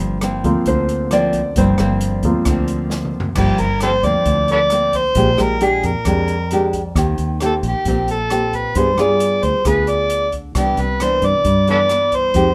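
Smooth and melancholic, this bossa nova excerpt in G minor at 134 BPM opens with a natural, short-sustained baby grand piano featured up front over a woody, fingerpicked classical nylon-string guitar on old strings, a round, foam-muted electric bass and an airy, polished jazz kit with dark cymbals and a boomy kick, which plays a fill at 2.9 s before a gritty, overdriven harmonica takes the jazz lead from 3.4 s with tongue slaps and scooped notes, in a small room with moderate reverb.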